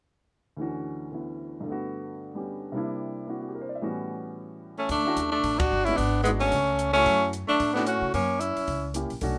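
A brisk swing feel at 222 BPM drives this playful slice of small-group swing and bop in D major, opening with a warm baby grand piano comping alone through extended chords before tenor and alto saxophones enter together at 4.8 seconds. The clear, close-miked tenor carries the melody up front with vibrato and a soft attack while the alto adds a second line, and from 4.9 seconds a woody, dark pizzicato upright bass joins a compact cocktail kit recorded in a small room, with hi-hat, punchy kick, ride and high-tuned snare, smooth with a rolled-off top. A band accent lands at 5.6 seconds, and the group sits in light reverb.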